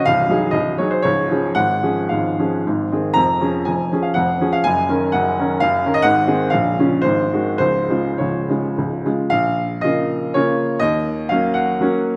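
Proud and rustic, this short cut from a longer classical piece is a romantic dance in triple time for solo baby grand piano, its dotted rhythms pulled freely by rubato. The piano sounds bright and up front, with a brilliant, open tone across a range from Bb0 to Bb5, and a moderate concert hall reverb around it. Chords such as Ab7, Db and Ebm7/Gb move through the opening, and at 9.3 seconds a new section turns toward Bbm and Ebm7.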